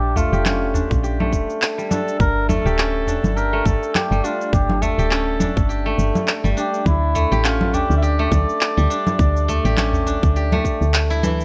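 A veiled, cup-muted trumpet carries a soft, classical-style solo melody through tape echo, set back in the room over a silvery, fingerpicked steel-string zither whose ringing arpeggios are roughened by 12-bit sampler grit and a low-pass filter. This hypnotic, meditative organic downtempo excerpt moves at 103 BPM with a lightly swung sixteenth feel, drifting from Bb through Gsus2 to Dsus2. Underneath, a round, dark, woody FM bass with a fast attack sits up front alongside tape-warmed electronic shaker, handclaps and congas; a small acoustic udu stays in the background, and a tight electronic kick joins at 0.9 seconds.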